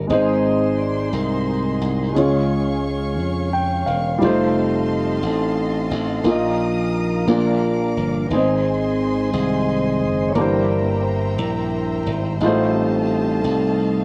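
Soulful and jubilant, this gospel passage in a straight 6/8 is cut from a longer piece, with a mellow tonewheel organ taking the solo throughout its 14 seconds. The organ's soft, flute-like voice carries a gentle key click and the sway of a slow rotary speaker over its sustained chords. A warm grand piano accompanies with a touch of slapback echo and steps forward with a brief fill from 3.2 to 4.2 seconds. Underneath, a glassy slap bass sits bright, punchy and up front, while a studio string section adds bowed, vibrato-rich chords with a smooth top at a lower level. The harmony moves from Ab and Db through F7, a Bbsus4 resolving to Bb, back to Ab and on to C7/G and F7/A, all in a dry, open-air sound with little reverb.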